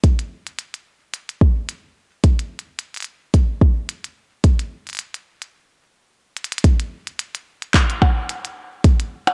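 A deep electronic kick drum and a glitchy, up-front drum kit of handclaps, clicky hi-hats and percussion blips open this intricate IDM excerpt at 109 BPM in 4/4, with a 16th-note swing. The mix carries heavy echo over little overall reverb, while both drum parts sit in a studio room sound. The groove stops at 5.5 seconds, a drum fill arrives at 6.4 seconds, and a new section begins at 6.6 seconds.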